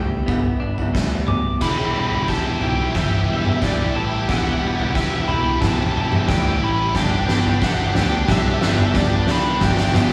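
Cathartic and brooding, this short post-rock excerpt moves at 90 BPM in a straight 4/4, centred on E minor. A dark, woody string section sits very quietly beneath everything with lush bowed chords and vibrato, while a compressed clean electric guitar picks arpeggios in the background and a growly, punchy bass holds the low end. The oversized low-tuned drum kit enters at 0.3 seconds and sits up front, its boomy kick, fat snare, toms and dark cymbals sounding saturated and gritty with a rolled-off top. A crunchy overdriven guitar takes up a high melody from 1.3 seconds, and a double-tracked distorted guitar riff joins at 1.6 seconds, when the harmony moves from G to E minor and the music builds under a sustained drum fill. The whole band sounds as if playing together in one small room, with a short, wet reverb.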